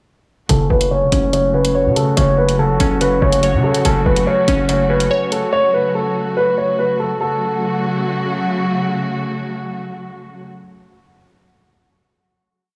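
Over a half-time drill beat at 143 BPM with bright, skipping electronic hi-hats, a menacing F# minor hip hop piece sets a woody, mellow upright piano looping its melody with tape echo against glassy, warbling digital keys arpeggiating in eighths, a smooth bowed chamber string pad, and a saturated, aggressive 808-style bass with sliding sub notes, as a filter sweep runs through the breakdown until the bass and hats stop near 5 seconds and the strings hold the final chord to 10.4 seconds.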